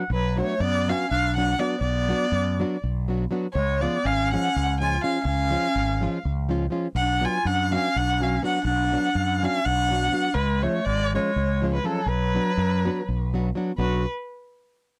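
A clarinet and a fingerpicked nylon-string guitar open this Balkan wedding-band folk piece, which is cut from a longer performance in a bittersweet, virtuosic mood. It moves in a brisk, straight 7/8 at 246 eighth-note beats per minute, in B Dorian with a raised fourth and tuned slightly flat to A4 = 437 Hz, and it sways between B minor and C sharp. At 0.1 seconds a single dark, bowed violin takes the melody up front, with vibrato, portamento, a soft attack and a smooth, expressive top. The classical-style clarinet plays a second line from a distant, roomy place, while the warm, fresh-stringed guitar sits close, accompanying in a classical manner. A mellow fretless electric bass anchors the low end with a round, punchy, amped tone, direct and forward, roughened by transformer saturation. The recording is dry and gritty, with little reverb, and a brief new section arrives at 13.8 seconds.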